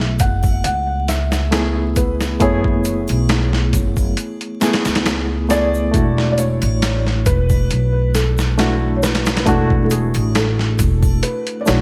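Brooding and smoky, this short cut from a longer trip hop piece moves at 68 BPM in F# minor with a gentle swing on the sixteenths, shifting from F#m11 to E9sus4 at 5.9 seconds. A gritty, sampler-style boom bap kit sits up front with a thumpy kick, medium-tuned snare and hi-hat, overdriven and compressed with gated reverb and the feel of a small room. A woody pizzicato upright bass on steel strings holds the low end just as prominently, while a reedy electric piano supplies chords through its built-in speakers, shimmering with fast and harmonic tremolo. From 0.2 seconds a felt-muted upright piano carries the melody, soft, dark and intimate, with audible action noise, lush chorus and tape echo. Egg shaker, triangle and group handclap stay in the background, and the whole mix has a bright 1980s-style digital sheen under light reverb and a layer of vinyl crackle.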